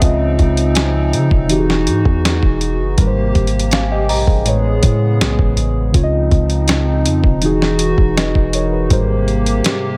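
The muted, felt-like synth keys, a hollow flute-like pad with sidechain pumping and a deep, sine-toned 808-style bass open this dreamy, romantic contemporary R&B fragment at 81 BPM, riding an up-front, gritty sampler-style drum kit with a thumpy kick and tape-warm compression. Lush major-ninth chords move from C#maj9 through Emaj9, G#maj9 and Amaj9, with chorus shimmering on the keys and pad in a dry room. From 0.8 to 4.8 seconds a worn, slightly out-of-tune celesta adds delicate, bell-like delayed notes deep in the background.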